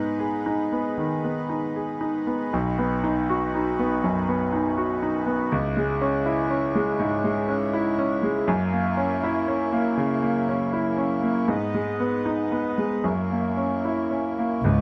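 Intimate and hopeful, this neoclassical piece for piano and strings moves at a rubato 80 BPM in 4/4, cut from a longer work, with a brilliant concert grand carrying the accompaniment up front with deep bass while a reedy, breathing hand-pumped harmonium holds sustained chords alongside it. The harmony drifts from G#m through B and C#m to F#7 before circling back. At 14.6 seconds a dark, expressive bowed cello with vibrato and portamento and a rich, smooth bowed double bass join just as the piece breaks off, all in a dry room.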